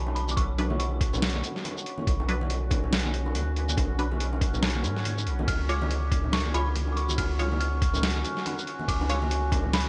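This deep dubstep excerpt opens with an eerie, inharmonic synth bell sounding briefly in the background over a resonant drone of moving overtones and a round, deep sub bass placed up front. The mood is heavy and meditative, moving at 141 BPM in a half-time feel with a swung sixteenth-note lilt, over a shift from B minor to C# at 5.5 seconds. Ringing bongos and congas played with soft hands arrive almost at once, distant as if in a large room and trailed by dub echo, followed by a muffled, tape-toned sampler kit of hi-hat, ride, shaker and a medium-tuned snare. A pitched-down, thumpy electronic kick anchors the low end, while a muted, detuned chord stab with a short filter pluck sits in the background, colored by phaser and dub echo. The bell returns at 5.5 seconds with its mellow chorus and echo, drifting above the slow-attack drone in a dark mix with light reverb.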